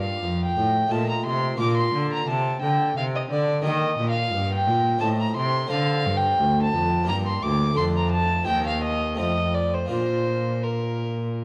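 A close, gut-string violin carries the radiant, serene melody of this baroque-style sonata movement in Bb major at 87 BPM in 3/4, over a brilliant Flemish-style harpsichord with three sets of strings and a nasal cello with light vibrato on the bass, all heard through moderate recital hall reverb and worn cassette tape with warbly pitch drift in this 11.4-second excerpt.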